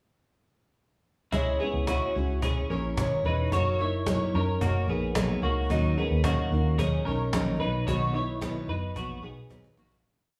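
At 1.3 seconds the whole band enters together on a restless, bittersweet piece of jangly indie pop: a chiming, twangy twelve-string electric guitar with vibrato rings out a compressed picked figure doubled in sixths, while a steel-string acoustic guitar strums eighths in barre shapes with audible finger squeak. Underneath, a dark, foam-muted vintage electric bass plays a round, melodic line up front, and a snappy cajon with snares drives a dance-floor beat. The verse moves through C#m, F#6, D#m7 and B in a small room with a short, wet studio reverb, fading out from 7.9 seconds as a drum fill arrives at 9.5 seconds.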